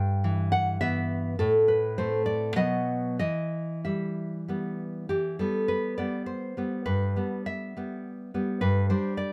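Romantic solo classical guitar in E minor, this sunny 3/4 excerpt moves with rubato between 91 and 108 BPM as an up-front, full-bodied nylon-string guitar is fingerpicked from G2 to G5 through Em/G, Am, B and Em, repeating its opening phrase at 5.1 seconds and closing on G5 in light reverb.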